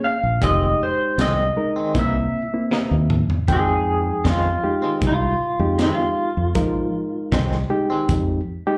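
A twangy, slightly broken-up electric guitar through a small old amp carries the melody over a reedy electric piano from the start of this brooding, mournful straight-eighth soul blues in F minor at 78 BPM, joined by a round, punchy fingered bass and a gritty, saturated breakbeat kit with a high-tuned snare and tight kick, while a compressed, clean direct guitar adds tremolo-and-slapback stabs. After Fm7 and C7#9 chords, a drum fill at 2.7 s leads into a clean guitar solo from 3.5 s over Fm7, and the whole passage sits in the light club reverb of a live gig heard through the venue's PA.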